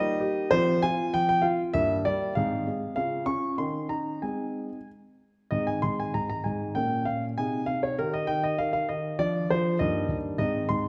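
A flexible, rubato 2/4 pulse around 98 BPM carries this elegant, graceful classical-period sonatina in Ab major, tuned to A4 = 436 Hz and cut from a longer piece. A solo concert grand piano plays throughout, intimate and up front with deep bass and audible action noise, ranging from G2 to Db6. Its opening phrase returns at 5.5 seconds, all set in a wet recital hall reverb that lingers about 1.5 seconds.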